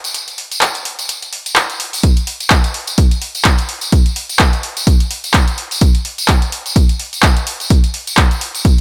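A punchy analog drum machine opens this driving, gritty house excerpt at 127 BPM in 4/4, its tape-warm handclaps and hi-hat sitting up front with a small-room character and a 57% swing on the 16ths, while a jingly acoustic tambourine shimmers further back in a large, distant space. At 2.0 seconds a punchy, up-front electronic kick thumps in, and the three parts carry on together to the end at 8.8 seconds. Light reverb and digital ambience give the sound a slight sheen.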